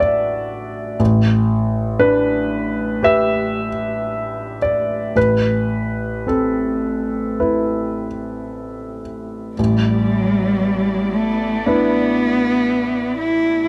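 In a free, rubato 4/4, this reflective, melancholic neoclassical excerpt opens with a clear, intimate grand piano playing an accompaniment up front, its long sustain and audible action noise caught by close, detailed microphones under light reverb. At 9.6 seconds a single bowed cello enters as a second line, rich and expressive with vibrato, a soft attack and portamento, while a lush symphonic string section sits much lower in the mix, holding smooth, even chords. The harmony drifts over a held A in the bass, from Bm/A and G/A to Amadd9 and finally Em7/A.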